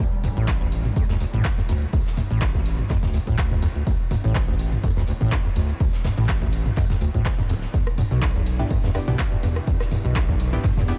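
Driving and hypnotic, this acid house excerpt rides a lightly swung groove cut from a longer piece. A dry, punchy electronic kick sits up front, joined by an overdriven analog drum machine of handclaps, hi-hat, rim clicks and toms, while a very quiet acoustic arena kit adds big-room hi-hat and a fat snare underneath. Below it all, a round, deep analog bass blends square and sine tones with a wave-folded, evolving edge and a sidechained pump. The squelchy, gritty acid riff carries the track, its resonant filter sweeps saturated and colored by chorus and analog delay as the harmony moves from a bare D5 to Em7 at 7.7 seconds. At 8.6 seconds a nasal, band-passed sawtooth chord stab with ring modulation cuts in brightly through a phaser and delay, all set in a light digital ambience.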